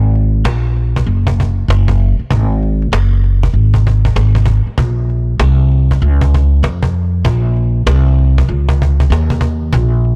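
The recording is blown-out and overdriven, with a dry, close sound and very little room around it. This is a short cut from a longer jazz-hop piece in 4/4, with a cool, smoky mood and a swung sixteenth-note feel. An acoustic upright bass plays pizzicato on steel strings from the very start. It sits up front, growly, warm and woody, and carries transformer saturation. A cajon joins at 0.2 seconds, struck with hard hands, its woody tone carrying faint snares and sitting lower in the mix than the bass. The two parts hold a single section together until the clip ends at 10.2 seconds.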